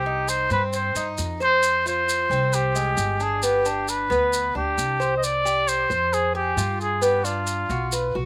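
A straight 4/4 pulse at 134 BPM drives this danceable excerpt of Cuban son and guajira, with maracas adding a grainy, mellow shake from 0.3 seconds. An upright bass anchors the low end with woody, pizzicato notes on steel strings, while the Cuban tres plays picked arpeggios on its doubled, partly octave-doubled strings, giving a metallic ring through a slapback echo. Up front, a solo trumpet carries the melody with a breathy, whispered tone, soft attack and vibrato, its vintage pop-style voice also touched by slapback echo. The harmony moves through Cm, Fm and G, then shifts at 5.2 seconds to a C5, Fm and G7 passage. Recorded outdoors with little reverb, the sound is dry and intimate, with a warm mood throughout.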